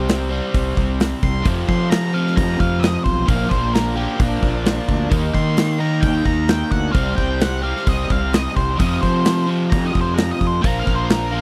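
Classic rock with a swaggering, driving mood, in C minor at 131 BPM in a straight 4/4, cut from a longer piece and captured as a dry, close 1970s-style studio recording. A double-tracked, overdriven electric guitar riff sits up front over a round, punchy fuzz bass and a big acoustic drum kit with a punchy kick, medium-tuned snare and hi-hat. From 1.2 seconds a dark, picked octave-fuzz lead guitar plays a distorted solo melody ranging from D4 up to C6, moving over power chords on C5, F5, Eb5 and Bb5.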